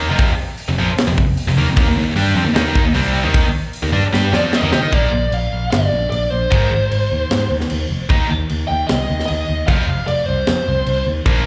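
Hard rock at 152 BPM in a swaggering, anthemic mood, heard as a live club gig through the venue's PA with light reverb, where a bright, double-tracked high-gain guitar riff with slapback echo drives over growly, punchy picked bass and a tight metal drum kit with a high-tuned snare and rolled-off top. A drum fill at 4.1 seconds leads into a new section, and from 4.4 seconds a smooth, dark overdriven lead guitar carries the melody with slapback echo and digital delay. The chords move from F5 and Eb5 through Bb and Ab before returning to Eb5 and F5, and the clip is cut from a longer piece.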